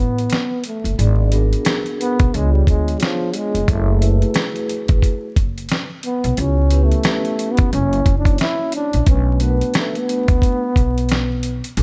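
A breathy, whispered trombone solos up front with scooped notes and vibrato through this cool, relaxed jazz-hop excerpt at 89 BPM with a swung 16th-note feel, carried by a woody pizzicato upright bass, a gritty, compressed sampler-style kit with a thumpy kick and fat snare, and mellow soft-mallet vibraphone accompaniment entering at 1.0 seconds, all in a dark, dry production dusted with vinyl crackle.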